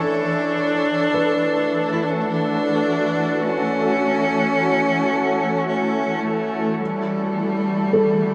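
From the first moment, a rich bowed cello sings a smooth, even melody with vibrato, set close in the mix yet tinged with distance by its tape echo, while a shimmering pad and a felt-muted upright piano sound beneath it. This serene, melancholic ambient passage moves slowly at 53 BPM in 3/4, and it is taken from a longer piece. The pad holds sustained chords, detuned and granular with an ethereal octave-up shimmer, chorus and its own reverb, and its bright tone sits prominently alongside the cello. Further back, the piano plays soft, dark arpeggios in a narrow range, its thick felt giving an intimate, mellow touch that is also carried by tape echo. The harmony rests on F#m7/E before shifting to A7sus4 at 6.8 seconds. A huge reverb places the whole ensemble in a vast, echoing space.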